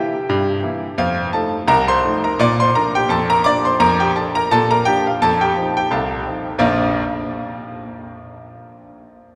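A gently swung two-beat pulse carries this jaunty, cheerful fragment of ragtime, cut from a longer piece. A solo concert grand piano, clear and slightly worn with a deep bass and short sustain, sits up front and plays from 0.0 to 7.0 seconds, moving through seventh chords that settle on the home chord. A cavernous cathedral reverb surrounds the playing, lending the hall-like space a long, wet tail.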